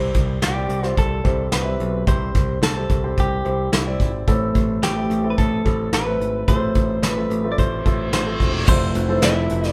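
Uplifting and anthemic, this short piano-driven pop excerpt in C major moves at 109 BPM, with a polished grand piano and a bright, growly picked electric bass under a soft brush drum kit, while a clean, compressed electric guitar carries the melody through spring reverb, a reverse cymbal rises into 8.7 s where a soft-attack French horn section enters in the background, and a crisp, very quiet group handclap sounds at 9.2 s, all set in a roomy live-band studio sound.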